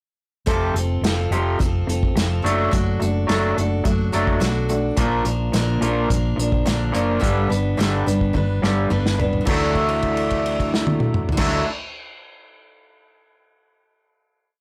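A straight 4/4 pop groove at 106 BPM, played with bundle sticks on an unplugged drum kit with a punchy kick and dark cymbals, drives this hopeful folk rock and heartland rock piece, as a round hollow-body bass plays driving fingered eighth notes, a bright steel-string acoustic guitar strums open chord shapes in eighths, and a twangy, slightly broken-up electric guitar through a small old amp adds a lo-fi palm-muted eighth-note riff over F, D/F#, Bb and G, before a drum fill at 8.3 seconds leads into a held Dadd9 final chord at 9.5 seconds, in a blown-out, overdriven recording with light reverb.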